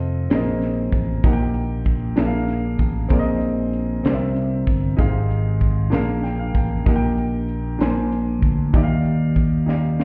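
A woody, vintage upright piano sits up front in this slow gospel piece in 6/8, its smooth tone carrying the chords and stepping out for a brief fill at 5.9 seconds. Beneath it, a fingered electric bass plays low with a dark, round, direct and amped sound that also sits forward in the mix. A crisp fusion drum kit joins at 0.3 seconds on hi-hat, kick and snare, its airy, polished studio sound marked by a high-tuned snare and a tight kick, and it closes with a short fill at 9.7 seconds. The harmony moves through rich chords such as Bb9sus4, C7, Fm9/Ab and Bb9 before settling on Ebmaj9, giving the passage a reverent yet jubilant mood. The whole mix sounds muffled, as if heard through a wall, with stone-room reverb, light reverb and studio ambience, and the clip is cut from a longer piece.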